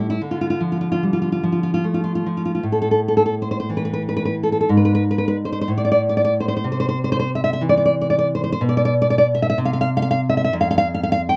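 Lightly reverberant, this short excerpt of a wistful, melancholic romantic piece for solo classical guitar in A minor unfolds in a rubato 6/8 at roughly 48-64 BPM, its warm, up-front fingerpicked nylon strings ranging from F2 to G5, tuned to A4 = 436 Hz, and moving from a brief opening on Dm to a longer passage that touches A5 at 2.6 seconds and C at 6.7 seconds.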